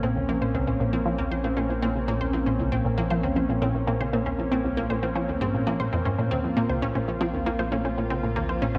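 Ambient, sequencer-driven space music at 117 BPM in Bb minor, this hypnotic, mysterious excerpt rests on a single Bbmadd9 chord for its 8.8 seconds. Up front, a thick, detuned sawtooth pad sustains the chord with chorus, while a juicy, squelchy resonant blip pluck plays a low riff coloured by phaser, chorus, delay and vintage 12-bit sampler grit. A punchy, warbling unison pluck spins delayed arpeggios and a deep, round sine sub bass holds Bb1, everything set in a moderate plate reverb.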